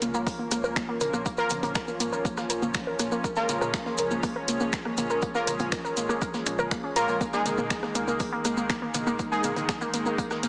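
A straight pulse drives this melodic techno fragment, with a punchy, overdriven electronic kick entering at 0.3 s alongside a very quiet, gritty breakbeat sampler-style kit of hi-hat, snare and tambourine. Over that, a layered deep house kit adds congas, finger snaps, rim clicks and metallic hats with overdrive, while close, grainy maracas play along and a barely audible electronic impact marks the opening second. A round, dark analog bass pumps underneath, and a warbling, lo-fi dusty pluck spins arpeggios through chorus and tape echo. Brassy synth stabs sit in the background with echo of their own, while a lush, airy unison pad holds sustained chords, all three of these parts breathing with sidechain pumping. The mood is driving yet melancholic, moving from Bbm to Absus2 at 7.2 s, and the whole piece sits in a moderate digital hall, heavily compressed with a small-speaker, radio-like sound.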